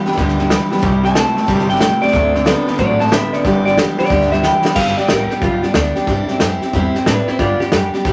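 An upbeat, retro rockabilly passage opens with a bright, twangy electric guitar playing a clean solo melody over a full-bodied, picked steel-string acoustic guitar and a darker, slightly broken-up electric guitar riff with vibrato, at a brisk 183 BPM in 4/4 with a swung eighth-note feel in G major. Almost at once an upright bass joins with woody, thumpy pizzicato on gut strings, and a vintage drum kit sits up front with a punchy kick, medium-tuned snare, hi-hat and dark crash cymbals in a small, pumping room. The harmony moves through G, C and D7 before returning to G, and a drum fill at 4.4 seconds leads into a new section at 4.8 seconds, where the riff guitar drops out. From there the lead guitar, acoustic guitar, bass and drums carry on through C and back to G. A moderate studio reverb gives the whole a lively, vintage sheen, and the passage is cut from a longer piece.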